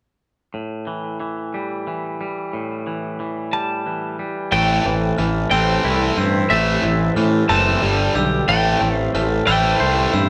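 In a slow 6/8 at 60 BPM, this brooding, cinematic post-rock excerpt in A minor opens on twangy, compressed electric guitar arpeggios through analog delay, joined at 3.5 seconds by a bright twelve-string melody, before a build-up from 4.5 seconds brings in a tight distorted guitar riff, round fuzz-overdriven picked bass, a faint shimmering pulse-width pad with chorus, and bell-like brass-mallet glockenspiel arpeggios ringing in the background, all played live in one room with moderate studio reverb.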